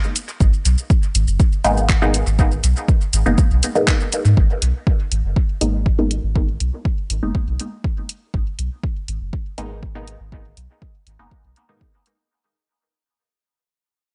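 This hypnotic, nocturnal dub techno excerpt in G# minor at 121 BPM opens with an overdriven deep house kit of handclaps, hi-hat and shaker, re-recorded in a small room and treated with dub echo, soon joined by a deep, up-front overdriven kick and a round, soft sub bass that pumps to the sidechain, while from 1.6 seconds a muted, detuned sawtooth chord stab with a filter pluck, phaser and dub echo sounds over the G#madd9 harmony in the mostly dry, dark-toned mix, which begins fading out at 4.4 seconds.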